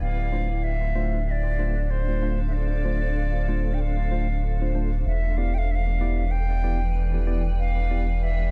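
A round, dark analog bass sits up front in this meditative, deep ambient excerpt, its filter sweep moving beneath a blurred, evolving granular cloud pad whose built-in reverb gives it a cloudy body. An airy, close-miked wooden flute carries the expressive melody through dub echo, while a worn, slightly out-of-tune tine electric piano, lightly overdriven through a combo amp and also dub-echoed, adds stabs from 0.3 to 8.1 seconds. The harmony shifts from Dm7 to Em7 at 5.1 seconds, all within a small, echo-heavy room and a gently swung feel.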